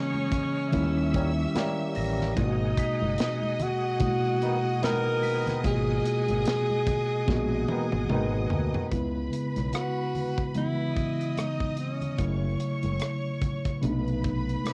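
Heard through the soft haze of a home cassette recording in a small room, this cut from a longer piece is lush 1970s-style soul in G# minor at 73 BPM, with a gently swung sixteenth-note feel and a cinematic, bittersweet mood. An up-front breathy tenor saxophone carries the scooped, vibrato-laden melody with plate reverb and tape echo until 12.6 seconds, over a mellow tine electric piano, a bright fingered bass, bowed studio strings with focused vibrato on the second line, and a reedy tonewheel organ whose fast rotary speaker, overdrive and key click sit in the background. A punchy, rolled-off drum kit, very quiet close congas, tight jazz-style trombone stabs, and a soft, bell-like glockenspiel played with rubber mallets from 2.0 to 7.0 seconds fill out the first section. A drum fill from 7.3 seconds then leads into a second section at 8.9 seconds that moves through C#m7, F#m7 and B7b9.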